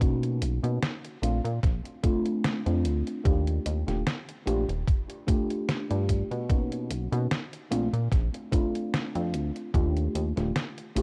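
A slow, lightly swung 74 BPM pulse in 4/4 from a thumpy, up-front electronic kick, which drops out at 9.9 seconds, and a detuned 8-bit drum machine's hi-hat and snare carries this dreamy, woozy vaporwave excerpt in Eb lydian, where a glossy, chorused synth bass of pulse and sawtooth tones with a plucky filter sits beneath a soft, round FM electric piano colored by phaser, subtle chorus and analog delay as it drifts through Bmaj9, Bbmaj9 and Ebmaj9#11 chords, all steeped in the warbling pitch drift of worn cassette tape.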